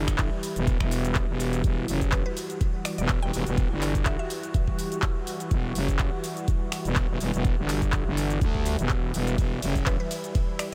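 A short cut from a longer bass house track, set in a light reverb, it has a bouncy, swaggering feel at 124 BPM in E minor, with a 16th-note swing and one Emadd9 chord held throughout. A growling, thick FM bass with tube saturation sits up front beside a knocking, layered electronic kick, while a garage kit of finger snaps, handclaps, metallic hats, ride cymbal and shaker fills in the groove, and a sweeping, detuned sawtooth pad with chorus breathes under sidechain pumping. A woody, round mallet-like synth pluck drifts in the background through a diffuse ambient delay, heard from 2.1 to 4.3 seconds and again from 9.9 seconds.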